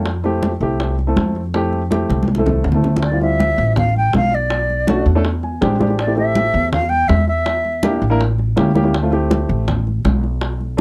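A dark, mellow baby grand piano and a woody, plucked upright bass open this lively, sunny Afro-Cuban jazz excerpt, joined almost at once by ringing, high-tuned congas and round, low-tuned bongos played with soft hands. The piano sits up front with an intimate feel, its short sustain and audible action noise giving it a natural, close presence, while the bass is steel-strung and forward in the mix. A brief percussion fill leads into a new section at 3.0 seconds, where an airy concert flute takes the melody, tongued and expressive with vibrato, sounding distant yet up front until 8.0 seconds. The harmony moves from Fmaj7 through Dm11, Bm7 and an altered E7, where the piano adds a short fill at 5.2 seconds, then on through Am7, Em7b5 and A7b9 to an open D7. The recording has the dry, close character of a 1970s studio with light reverb, and the bongos carry a vintage, band-limited tone.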